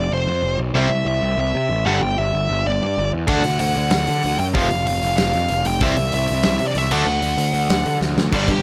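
A straight 4/4 pulse at 190 BPM runs in a half-time feel through this rowdy, rebellious punk rock excerpt, with the big rock drum kit arriving at 3.3 seconds, a punchy kick and medium-tuned snare up front in a big room, and a drum fill from 8.0 to 8.3 seconds. A dark, bluesy lead guitar carries the melody up front with distortion and tape echo, over a growly fuzz bass and two bright rhythm guitars, one crunchy and overdriven, the other distorted, set in the background playing riffs. The chords move through F5, C, G5 and D with little reverb.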